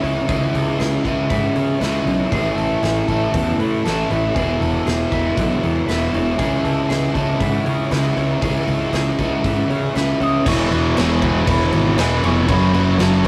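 A dense wall of picked guitars opens this dreamy, wistful shoegaze and dream pop excerpt, with a crunchy overdriven riff and a thick fuzz riff stacked over a punchy, fuzzed bass and a raw garage drum kit whose gritty, pumping room sound and rolled-off top give it a rehearsal-room feel, while a slightly broken-up, scooped guitar arpeggio sits in the background. The chords drift from C#m through Amaj7 and E, and at 10.2 seconds a round, gentle FM synth lead with chorus and tape echo enters in the background. At 10.5 seconds a bright, double-tracked distorted guitar riff joins as the harmony shifts to E6 and F#m.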